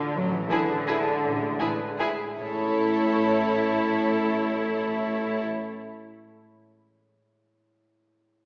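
A mellow, ringing concert harp plays fingerpicked arpeggios in the background as up-front cellos carry the bass and a distant double bass section joins at 0.2 s, then at 0.5 s a focused violin section takes the melody over a smooth second violin line and a lush viola accompaniment in this sweeping, elegant orchestral ballroom waltz in A major at 148-185 BPM, which begins by slowing down with rubato, moves from E7/A to A, is heard from further back in a wet concert hall through a small speaker, and is cut from a longer piece.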